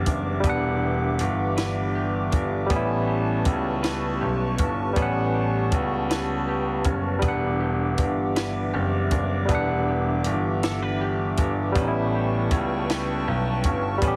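A barky tine electric piano sits up front with a light overdrive, as if pushed through a small combo amp, carrying the accompaniment in this slow, late-night R&B passage in six-eight, cut from a longer piece. Beneath it, a concert grand piano plays the bass line in its deep low register, natural and prominent, while a compact cocktail drum kit enters at 0.1 s with a punchy kick, a high-tuned snare and hi-hat, all dry and close. A clean, fingered semi-hollow electric guitar adds a second line from the background, its warm hollow-body tone coloured by analog chorus. Above everything floats a dark, flute-like pad of detuned waves, holding sustained chords with a gentle attack and long release. The harmony sways between Em7 and A9 in a yearning loop, and the whole mix is squeezed into a heavily compressed radio sound with light reverb and small-room ambience.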